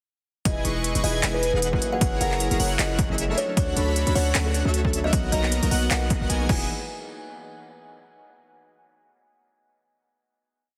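Playful and lush, this short future bass piece runs at 154 BPM in a swung half-time feel in E lydian, launching straight into a drop at 0.5 seconds over Emaj7, F#9, Dmaj7 and Bmaj7 before a final hit at 6.7 seconds. A woody, ringing kalimba carries the repeating melody with dub echo and sidechain pumping, while a smooth detuned supersaw throbs through a chord riff, glassy digital keys add dotted-rhythm chords in the background, an airy dreamy lead with chorus and phaser arpeggiates softly behind, and a very quiet breathy pad holds sustained chords. Underneath, a deep, boomy 808-style bass follows the chord rhythm, and an overdriven punchy kick joins an overdriven big-room kit of claps, crisp hat rolls and crash, all within a heavily compressed, radio-like sound with light reverb.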